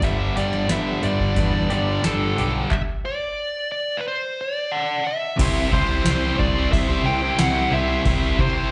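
Anthemic yet bittersweet, this short cut from a longer quiet-loud alternative rock piece moves at a straight 90 BPM in 4/4, heard as a live gig through the venue's PA with club reverb and a dulled top end. Up front, a dark, smooth overdriven lead guitar carries the melody throughout, colored by plate reverb, slapback echo and analog delay. Beneath it, an overdriven semi-hollow guitar with a hollow-body glow and a bright, tight distorted guitar with slapback echo both play the riff, while a round, fuzzy picked bass anchors the low end. A clean, fingered semi-hollow guitar adds tremolo-tinged arpeggios in the background but drops out at 2.7 seconds, when the band hits a stop over a G chord that gives way to silence in the harmony. The booming analog drum machine sits up front with a deep kick, crisp snare, metallic hats, handclaps and crash, and the music moves into a new section on C at 5.4 seconds.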